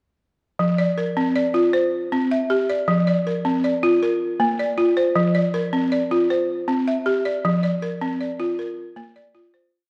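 Set in a reverberant recital hall, this short, complete piece of West African traditional music features a solo balafon placed up front, its woody, buzzing tone struck with rubber mallets. The hypnotic, flowing 12/8 interlocking ostinato cycles through F5, C and Bb harmonies from 0.6 seconds, before a fade-out that begins at 7.4 seconds and closes the piece by 9.7 seconds.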